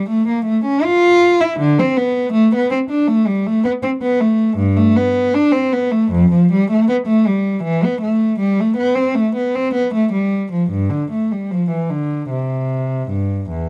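Classical baroque-style suite movement for unaccompanied cello, this brief passage is cut from a longer piece and carries a solemn, grave mood in A minor. A single bowed cello plays alone for the full 13.7 seconds, moving at around 79 BPM in 4/4, with uneven beats and rubato giving the pulse a free, breathing quality. The player ranges from E2 up to F4, shaping the line with expressive vibrato and portamento. The instrument sits close and up front with a warm tone. Light reverb and a dark production add a sombre depth to the room around it.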